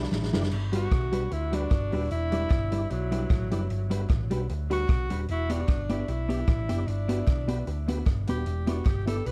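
Ska in G major at 151 BPM with a light swing, cheerful and upbeat, opening on a short drum fill from a punchy, up-front vintage kit before a clear, close-miked tenor saxophone takes a vibrato-laced solo from 0.8 seconds, trailed by dub echo. Beneath it, a dark, round hollow-body bass sits up front, a clean, compressed electric guitar plays the accompaniment, and a tonewheel organ with key click and fast rotary speaker adds background stabs, while crisp group handclaps are barely audible. The chords alternate between Em7 and Gmaj7 in a dark, warm production with light reverb, and the passage is cut from a longer piece.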